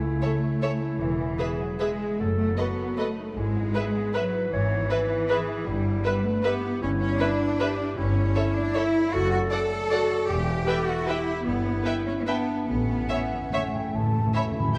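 In a lilting 3/4 at 135 to 168 BPM, this orchestral ballroom waltz moves with a rubato feel that gives it a festive yet elegant poise. The clear, lush cello section sits up front carrying the bass, and a rich, distant double bass section with light vibrato anchors it from below. Two violin sections stay in the background: one with a soft attack and smooth top carries the melody, while the other adds an even second line above a focused viola accompaniment. A solo clarinet in classical style weaves its own second line, and a concert harp rings out fingerpicked arpeggios across a broad range. Near the close, timpani with hard mallets and calf heads play an articulate fill from 12.7 s, and an airy, hollow concert flute joins at 13.1 s. The harmony drifts from A through E and B7 toward E minor and back to A, all set in a dark, warm production with a moderate scoring stage reverb.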